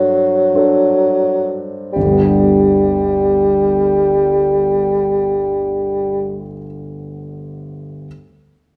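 In a slow, rubato 3/4 that drifts between 39 and 48 BPM, this brief passage from a longer romantic classical piece for bassoon and grand piano unfolds in G major with a lyrical, serene mood. The tempo slows through the opening two seconds over a D7/G chord, settling onto G at 2.0 seconds as a new section begins. The dark-toned bassoon carries the melody up front in a classical solo style, moving between F#3 and G3 with a light vibrato and a roomy, slightly distant quality, before falling silent at 6.4 seconds. Beneath it, a warm concert grand piano provides the accompaniment across a range from G1 to C5, its deep bass and long sustain ringing on until 8.1 seconds. A moderate recital hall reverb surrounds the duo, lending the performance a concert setting.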